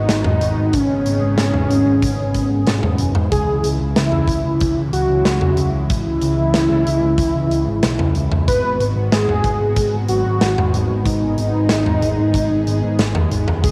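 A straight 4/4 groove is set by an up-front big rock drum kit, its hi-hat, medium-tuned snare and toms carrying a natural, big-room sound, while a punchy acoustic kick slips in behind them at 0.7 seconds. This nostalgic, driving synthwave excerpt from a longer piece rolls through a drum fill at 2.7 seconds before the harmony moves from G#m7 to C#m, returning to G#m7 at 8.5 seconds. A picked electric bass gives an amped, tube-saturated low end with a warm punch. In the background, a smooth, detuned sawtooth pad with chorus, a moving notch and a soft attack holds long, sustained chords that pump against a sidechain. Out front, a thick, bold unison lead of detuned sawtooth and triangle layers with a sub octave sings the melody with vibrato, its mellow tone trailing tape echo. The lead, pad and drums carry a cassette-tape grain, and the whole mix sits in a light studio reverb, with the worn character of a home recording on cassette.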